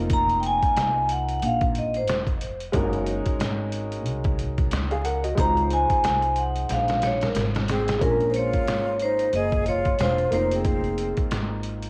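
Nocturnal and smoky, this swung jazz-hop clip from a longer piece sets a ringing, metallic vibraphone lead, played with medium hard mallets and tinted by cassette tape and analog delay, over an intimate upright piano with audible action noise, a woody pizzicato upright bass and an up-front, gritty, pitched-down sampler-style drum kit whose fill begins at 6.7 seconds, while a breathy jazz flute second line with vibrato enters at 7.7 seconds, all wrapped in light studio reverb, cassette home-recording character and vinyl crackle.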